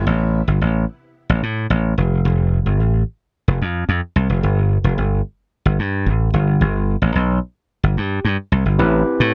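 A punchy, bright slap bass carries this slick, late-night funk fragment at 110 BPM in A minor on its own, unaccompanied over a chordless opening, until a barky, gritty overdriven tine electric piano arrives at 8.8 seconds on an Am7 chord, with the short clip cut from a longer piece and set in a dark, digital ambience.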